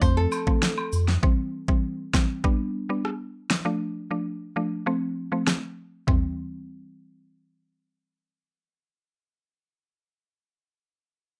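Sunny, summery dancehall cut from a longer piece, where a woody, mallet-like synth pluck with chorus carries the chords up front throughout, a fingerpicked flamenco guitar and a round, deep warm sub bass sound only in the opening moments, a distant cabasa and woodblock flicker briefly, and an overdriven pop drum kit with a knocking kick and fat snare punches up front until 6.2 seconds, in a dry, close mix.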